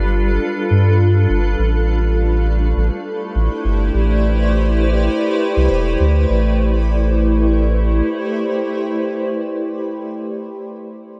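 A lush hall reverb soaks this dreamy, hazy ambient dub fragment in A minor, moving at 102 BPM in 4/4 with a light sixteenth-note swing. A round, deep sub bass holds the low end up front with sustained notes until 8.0 s, while a cloudy, evolving granular pad drifts over the G7 to Am11 change in blurred, slow-blooming chords. The pad carries its own reverb and lingers to the end, and the passage shifts into a new section at 6.3 s.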